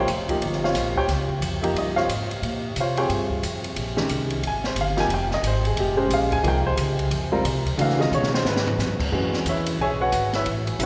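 Searching and intense, this modal jazz passage swings briskly at 179 BPM in 4/4, centred on B-flat dorian and cut from a longer piece. An upright piano carries the accompaniment up front, its intimate, natural tone coloured by audible action noise. Beneath it, a pizzicato upright bass with gut strings sounds woody and thumpy. An open acoustic drum kit enters at 0.1 seconds, with dark cymbals, a high-tuned snare and a boomy kick, and plays a fill from 8.1 to 8.8 seconds. The harmony moves from Bbm69 to Db7 before shifting to F#m11 at 9.1 seconds, all set in the long, wet reverb of a cathedral-like hall.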